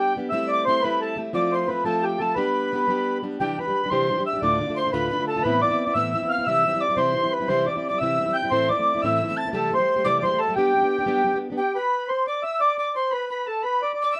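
Celtic folk jig in 6/8, cheerful and bright, led by a reedy, mellow accordion carrying the melody, close-miked, dry and up front. A wooden whistle sits higher and more distant as a second line, its pure tone marked by chiff, crisp attacks and vibrato, with a somewhat unsteady feel, while a full-bodied fingerpicked jumbo steel-string acoustic guitar provides accompaniment up front. Light reverb rounds out the room, and in this excerpt the guitar drops out at 11.6 seconds, leaving accordion and whistle to carry the final passage.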